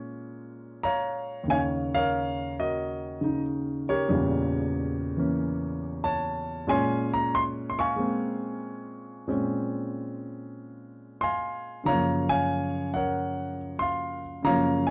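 Smoky and cool, this short solo jazz piece cut from a longer performance features an intimate grand piano, placed up front with its action noise audible, swinging through Bbm7, Ebm9, Edim7, Bbm9 and Gbmaj7 in a dry, close 1970s-style studio sound that runs to 14.9 seconds.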